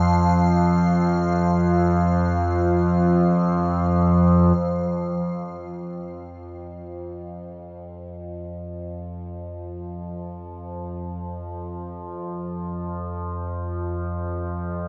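Unfolding in free time, this dark ambient drone piece has a dark, unsettling mood and is cut from a longer work. An overtone-sweeping synth drone sits up front from 0.0 to 14.9 seconds, spanning F2 to F3, its sawtooth and sine tones resonant and sustained, with moving overtones, a slow attack, a long release, chorus and built-in reverb. Above it, an icy glass pad holds a single F5 until 4.6 seconds: a crystalline, airy layer of detuned unison sine and square waves with a noise layer and a sub octave, set much lower in level and shaped by chorus, built-in reverb and shimmer reverb. That pad fades out over the opening section, while the drone fades in from 4.6 seconds to the end. The whole recording sits in a vast, echoing cathedral space with a 5.9-second reverb tail that keeps the sound cavernous and haunting.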